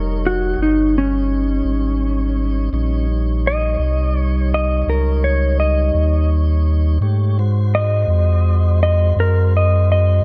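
Slow blues in a swaggering, laid-back 12/8, this piece is carried by a clean, compressed lap steel guitar that takes a fingerpicked slide solo up front, its lines trailing dub echo. A mellow tonewheel organ holds round, sustained chords with key click and a slow rotary speaker, while a deep, smooth sine sub bass sits up front beneath them. The harmony moves from Eb7 to Ab7 at 7.0 seconds in a lightly reverberant, echo-heavy mix.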